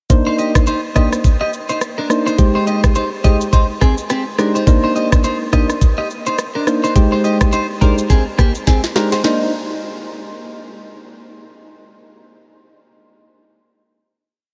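A clean electric guitar, lush with chorus and analog delay, picks a repeated interlocking figure doubled in sixths over soft, round electric-piano-like synth keys playing syncopated chords that move between Cm9 and Abmaj7. An electronic afro-pop drum kit supplies a swung 105 BPM afrobeats groove in C minor, with a knocking kick, sharp snare, syncopated rim clicks and shaker, and a drum fill at 8.7 seconds. The sultry, smooth piece is soaked in huge, dreamy ambient reverb and settles onto a final Cm9 chord at 9.2 seconds.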